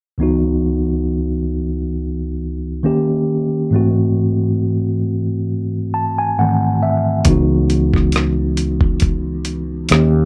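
A mellow tine electric piano opens this smooth, introspective neo-soul and R&B excerpt in C# minor at a relaxed 68 BPM with a light 16th-note swing, voicing C#m11, D#7 and G#7b9b13 chords through its built-in speakers and playing a fill at 5.5 seconds. A gritty, overdriven sampler-style drum kit with a thumpy kick, hi-hat and rim click arrives at 7.2 seconds, joined at 7.3 seconds by a growly fretless electric bass holding its low register as the harmony returns to C#m11. The sound is dry and close, like a 1970s studio, with light reverb.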